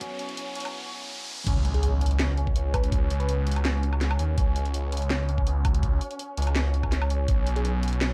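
This heavy, cinematic half-time drum and bass excerpt opens on a tense, string-like drone in the background, bright shimmering santur arpeggios with delay, a riser, a knocking electronic kick and a drum kit with cracking snare, bright hats, crash and woodblock, all building over a filter sweep. At 1.5 seconds the drop lands with an impact and an up-front, swirling detuned saw bass through a phaser, while a round, keys-like FM lead with chorus and delay drifts in behind at 1.7 seconds. The production is dark and digitally spacious, moving from C#m to C#7sus4 and settling on Bsus2 near the end.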